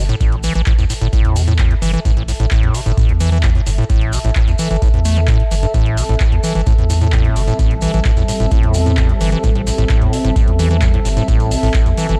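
Dry, gritty and cassette-worn, this raw acid house passage at 130 BPM sits on an Am7 chord in A minor, with a deep analog kick, metallic drum-machine hi-hats and handclaps, and distant, grainy maracas driving a squelchy, resonant square-wave acid riff with sampler crunch and tape echo, while a thick, saturated sub bass and a nostalgic, warbling lo-fi pad pump under the kick throughout, joined at 5.7 seconds by a smooth, dark, detuned sawtooth pad with chorus, before the section is cut off at 12.2 seconds.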